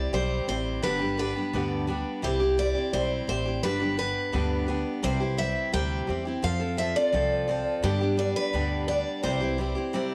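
A straight 4/4 pulse at 171 BPM drives this heartfelt, down-home honky-tonk and classic country cut in C major, where a bright picked steel-string acoustic guitar carries the melody with audible finger squeak, cassette tape grit and analog delay, over a second full-bodied picked acoustic guitar playing accompaniment through the same cassette tape coloring, while a woody, thumpy pizzicato upright bass holds the low end until 9.7 seconds, all in a home cassette recording with moderate studio reverb as the chords move through C, G and F.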